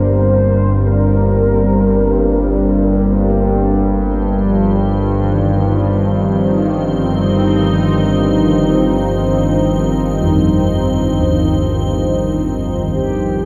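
In free time, this ominous, vast dark ambient drone opens on Gm over a warbling vintage analog drone and a detuned, resonant sweeping pad with chorus. The pad moves to Cm/G while bronze gamelan-type bossed gongs ring out arpeggios in the background through diffuse delay. A mellow horn-like synth lead with tremolo and lush chorus sings briefly at the start and returns near the close, and a crystalline, airy glass pad enters at 4.3 seconds. The whole fragment is bathed in a huge 8.5-second reverb and fades out from 8.9 seconds.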